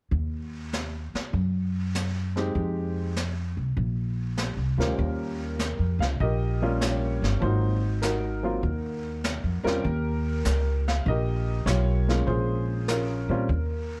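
A playful, swinging jazz piano trio excerpt opens with woody pizzicato upright bass and a brushed kit with a high-tuned snare and boomy kick from 0.1 seconds, before an intimate, up-front upright piano with audible action noise enters with the melody at 2.4 seconds, all captured by close, detailed microphones in a dry room.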